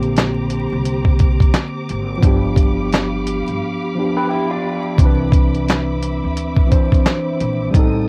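A reflective, hazy lo-fi hip hop fragment opens on a gritty, compressed sampler-style drum kit up front, its thumpy kick, medium-tuned snare, hi-hat and handclaps swinging alongside a clean tine electric piano, a growly, woody pizzicato upright bass and a lush bowed string section holding smooth chords with vibrato and portamento. The piano and strings are low-pass filtered and tape-colored, the drums share that cassette grit, and vinyl crackle with light reverb frames it all as a home cassette recording. In a break from 3.6 to 5.0 seconds, a dark, slightly broken-up electric guitar through a small old amp adds a brief fingered line from 4.2 seconds, trailed by tape echo and plate reverb, as the harmony moves from Bb69 and G7 to Cmaj9.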